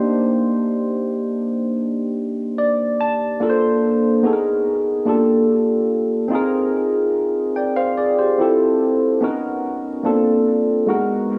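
In a straight 4/4 feel, this short cut from a longer soul piece sets a warm, smooth mood with a lone tine electric piano, bright, barky and clean through a combo amp and placed up front, colored by analog chorus and analog delay in a light small-room reverb, opening on Cm9, adding a fill from 2.2 to 3.4 seconds, then moving through chords such as Bbmaj7, Abm7, Gm7 and Fmaj7 until it stops at 11.4 seconds.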